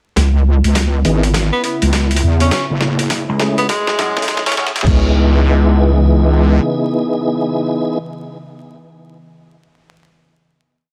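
A gritty, lo-fi glitch hop piece at 102 BPM in C# minor with a 16th-note swing, funky and playful, where an up-front, saturated wobble bass with changing wobble speed and pitched-down, sampler-style boom bap drums with a thumpy, very quiet kick drive a build over C#m7 and F#m9 through 4.9 seconds, while a round tonewheel organ with fast rotary speaker and tape echo plays sparse rootless stabs, a bright tenor saxophone with vibrato adds short phrases, a punchy slap bass appears from 3.3 to 4.9 seconds, and a warbling, nostalgic sawtooth pad with sidechain pumping sits in the background under vinyl crackle until the final C#m7 chord rings out to 8.0 seconds.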